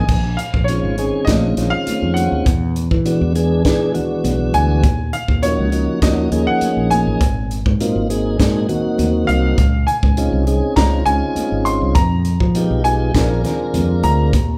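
Electric jazz fusion in Bb minor at 101 BPM, driving and nocturnal, this excerpt sets a bright, worn baby grand piano melody with audible action noise over a mellow tonewheel organ turning on a slow rotary speaker, a dark, round fretless bass up front, a gritty, saturated drum kit with a high-tuned snare and tight kick, and very quiet, soft-handed congas, all played live in one room with moderate large studio reverb through chords moving from Bbm11 to E9, Ebm9, Ab13 and Dbmaj7 before Fm7b5 and Bb7.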